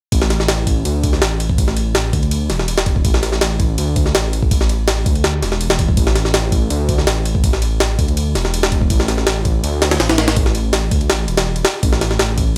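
Drums and bass arrive together at 0.1 s in this short cut from a longer drum and bass track, a frenetic yet nostalgic slice of jungle running at 164 BPM in straight 4/4. The sampler-style jungle kit sits up front, compressed and pitched up, with a thumpy kick, a high-tuned snare and a ride cymbal carrying a gritty, tape-warm character that suggests it was re-recorded in a large room. Beneath it, a dark detuned saw bass rumbles between E1 and D2, its unison sawtooth voices beating against each other over a deep sine foundation. The bass has a fast attack and sustained notes, and it also sits up front in the mix. The overall sound is dry and close, with little reverb, and the bass holds on until 12.6 s, just after the drums stop at 12.5 s.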